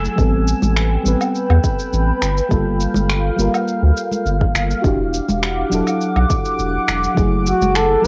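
A straight 4/4 groove at 103 BPM carries this smooth sunset chillout excerpt, built from an overdriven electronic shaker, finger snaps and woodblock, with a deep, layered electronic kick drum entering at 0.2 s and soft-handed congas sitting close and dry in the background from 0.6 s. Underneath, a round analog bass with a sine-like, dark tone stays up front, holding the low end from E1 to E2. A mellow FM electric piano with a soft, full-bodied sound and a faint noise layer plays the accompaniment through chorus, tape echo and a filter sweep, while a shimmering ambient pad with an ethereal octave-up glow, slow attack and granular, evolving texture sustains the chords through chorus and phaser. The harmony moves from Am9 to Gm9, Em9 and F#m9. Just before the cut, at 7.5 s, a close-miked flugelhorn with light vibrato and a gentle attack steps forward as a solo melody. The whole has the cosy character of a home cassette recording, bathed in a moderate spring reverb.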